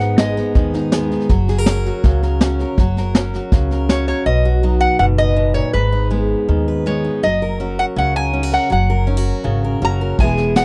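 A dry, close recording with a 1970s studio feel sets this easygoing, heartfelt honky-tonk and classic country excerpt up front, where a bright, fresh-strung steel-string acoustic guitar picks the accompaniment over a woody pizzicato upright bass. A dark, smooth brush kit with a punchy kick carries the beat until 4.1 seconds and returns only at 10.2 seconds. Meanwhile a metallic, nasal lap resonator guitar, played with fingerpicks and a steel bar, weaves a slide solo through both sections after re-entering at 3.9 seconds.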